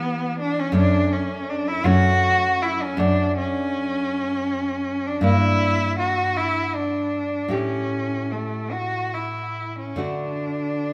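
A tender, lyrical romantic duo in a rubato 12/8, this brief fragment of a longer piece sets a single rich, bowed cello singing a smooth melody with vibrato above the bright, full-bodied fingerpicked accompaniment of a nylon-string classical guitar, the pair bathed in the moderate reverb of a concert hall and resolving to a home chord at 10.0 seconds.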